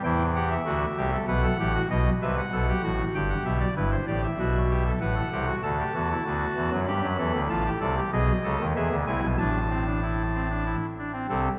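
Classical in a baroque style, this three-part fugue for pipe organ moves at 96 BPM in 3/4 with a straight feel, lively yet stately in A minor. A single pipe organ plays alone from 0.0 to 11.5 seconds on a soft reed oboe stop used as a solo voice, with baroque voicing and a distinct chiff, placed up front. Its range runs from G1 to B5. The harmony opens on E minor and travels through B7, Am7, D, Gmaj7 and E7 before arriving on A minor at 9.4 seconds, with a new section beginning at 3.8 seconds. A long church reverb lingers around the organ, and the production is dark and warm, with the highest frequencies rolled off, as this short passage is cut from a longer piece.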